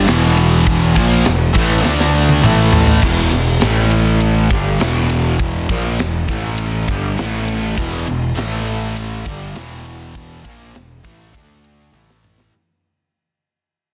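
Aggressive, driving hard rock at 101 BPM in E minor, this short cut from a longer piece stacks riffs from a bright, double-tracked distorted electric guitar that drops out at 3.0 seconds and returns at 7.8, a hollow-bodied overdriven semi-hollow guitar and a sludgy distorted guitar sitting in the background, over an up-front, punchy fuzz picked bass and a tight, polished metal drum kit with bright cymbals whose fills land at 1.8 and 11.9 seconds, all pressed into a dense, heavily limited modern master with light studio reverb as the track fades out from 3.0 seconds.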